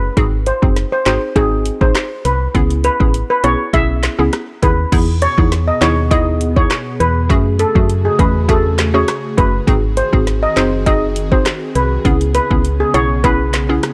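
A shimmering steel pan carries the melody up front through tape echo in this hypnotic, tough dancehall excerpt at 101 BPM in C# minor, moving over a G#7 to C#m7 progression that later passes through Emaj7 and F#madd9. An electronic afro-pop kit with a deep kick, woody snare, metallic hats, rim clicks, handclaps and crash sits alongside a punchy, dark FM bass and a hollow, bouncy square-wave pluck with chorus. At 4.9 seconds an airy, breathy pad enters with sidechain pumping, all within a dry, gritty hardware sound with transformer saturation.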